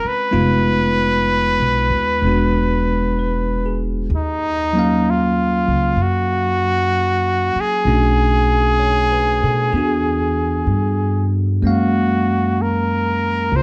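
An up-front, punchy trumpet with light vibrato and scooped notes carries the forceful solo melody of this intimate, melancholic jazz ballad at 64 BPM with a swing feel, over a clean, bell-like tine electric piano and a woody pizzicato upright bass, all in light reverb across a 13.6-second excerpt that moves from Fm7b5 through E9 and Ebm9 to a closing Gbmaj9.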